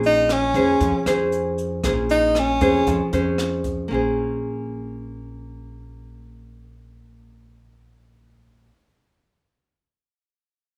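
Bossa nova with a smooth, melancholic air, this brief cut opens with a breathy tenor saxophone soloing up front, with subtone, vibrato and scooped notes, until 3.1 s, over a fingerpicked classical nylon-string guitar, a woody, thumpy pizzicato upright bass, and an airy brush kit with a boomy kick and rim clicks that drops out at 3.8 s, leaving guitar and bass to carry on in a rough demo mix with moderate studio reverb.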